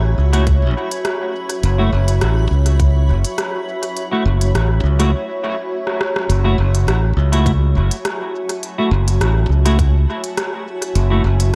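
A light reverb and digital ambience give this short ambient dub excerpt a hazy, meditative air, with a gentle swing in its sixteenth-note feel. A granular cloud pad holds sustained chords from the start, its blurred, detuned sine tones evolving under a moving notch and a slow attack that lets them bloom into a mellow, full-bodied haze. Up front, a bright, growly fingered electric bass anchors the low end with a direct, unvarnished presence. A dark, scooped clean electric guitar places picked stabs through analog chorus and dub echo, while an organic electronic drum kit adds crisp hi-hats and rim clicks, tape-warm and re-recorded in a large room, with its own dub echo trailing behind. A tight electronic kick sits in the background, appearing only from 0.5 to 2.9 seconds and again from 7.5 to 9.9 seconds. A break opens at 5.1 seconds and closes with a short drum fill before the second section begins.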